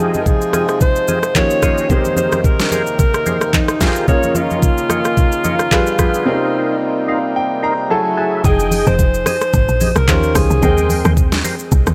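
Light reverb surrounds this late-night, hypnotic amapiano excerpt in F minor, moving at 110 BPM with a gentle 16th-note swing. A clear grand piano with audible action noise and long sustain carries the lush chords, joined by a reedy, breathing harmonium pumping in the background under sidechain and an overdriven, gritty tonewheel organ dropping stabs through chorus vibrato, slow rotary speaker and delay. An electronic, up-front R&B drum kit with a knocking kick, deep snare, smooth hats, handclaps, rim click and shaker sets the groove, while bright, close and dry congas played with soft hands sit further back. A breathy alto saxophone with light vibrato and a smooth top sings the solo line over it all, trailed by delay. After a piano fill from 6.8 seconds, the harmonium falls away at 8.4 seconds as the drop arrives and a woody, punchy log drum bass with a fast attack and decaying tail enters to anchor the low end.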